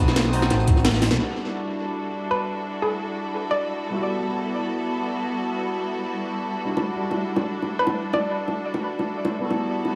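Liquid drum and bass rolls in on a straight four-beat groove, led by an up-front, layered electronic kit with a cracking snare and metallic hats, and backed by a saturated, rolled-off breakbeat kit sitting in the background, both carrying tape echo. A thumpy, gritty electronic kick hits once, a drum fill arrives at 1.0 s, and at 1.2 s the drums and the smooth sawtooth synth bass drop away as the harmony settles into a lush passage. Round, low-tuned bongos played with soft hands join in the opening moments and return at 6.8 s. Throughout, a biting symphonic string section holds sustained chords with light vibrato, sampler grit and sidechain pumping. Beside the strings, an overdriven, barky tine electric piano through a combo amp adds accompaniment with phaser and tape echo, while a hollow, nasal square-wave pluck with chorus and dub echo briefly sketches a bouncy melody. The echo-heavy mix, with moderate plate reverb and small room ambience, gives this cut a lush, rolling mood.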